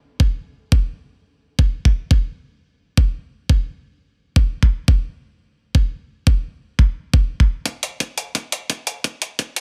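Soulful and melancholic, this straight 4/4 drum and bass excerpt at 173 BPM opens on an up-front, layered, knocking electronic kick from 0.2 seconds, shaped by a high-pass filter and studio reverb while a filter sweep runs over the drums until 7.7 seconds. At 7.7 seconds a build-up begins as a gritty, compressed, sampler-style electronic hi-hat enters up front at its natural pitch, low-pass filtered and touched with studio reverb. The sound is dry overall, with a dense, heavily limited modern master.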